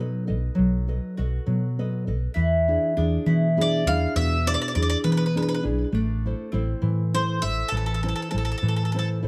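A moderate studio room surrounds this romantic, sunny Italian folk serenade in a lilting 6/8, heard as a brief cut from a longer piece. A fingerpicked nylon-string guitar with full-bodied depth and audible finger squeak, a dark, punchy hollow-body electric bass and a mellow, round mandolin on the second line all begin together, moving through B7 and E7 before settling on A minor at 5.9 seconds. At 3.6 seconds, a bowl-back mandolin enters up front with the picked double-string melody, its sound warm and bathed in plate reverb.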